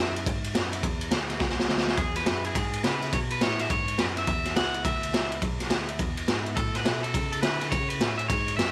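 A swung groove in four drives this short, rollicking rockabilly fragment, with a raw garage drum kit coming in at 0.2 seconds and sitting up front with a boomy kick, a medium-tuned snare and a ride cymbal, all sounding saturated and gritty with a rolled-off top in a small room. A drum fill at 1.4 seconds sets the groove rolling again before the same section repeats. A twangy, slightly broken-up electric guitar carries the melody, its picked notes trailed by tape echo. A tine electric piano plays the bass line with a clean, warm tone through its built-in speakers, while a bright, boxy acoustic guitar with fresh strings picks a swing accompaniment in the background. The harmony stays on E before moving to A at 6.6 seconds, and light reverb with studio ambience gives the whole a retro feel.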